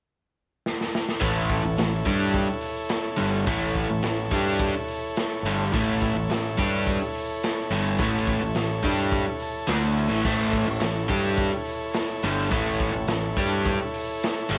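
A straight 4/4 beat at 106 BPM drives this raw, swaggering garage rock excerpt in A major, cut from a longer piece and opening with a drum fill before the full band arrives at 1.2 seconds on an A chord. The acoustic kit of kick, snare, hi-hat and crash sounds saturated and gritty, with dark cymbals, a punchy kick, a medium-tuned snare and a rolled-off top, sitting up front in a small room that pumps audibly. Also up front, a bright, crunchy overdriven guitar riff is picked and double-tracked, while a growling picked electric bass, direct and amped, adds overdriven low end. Alongside them, a vintage combo organ holds clean, reedy sustained chords with light vibrato, then plays a short fill at 9.1 seconds. Light reverb gives the whole a close, small-room ambience.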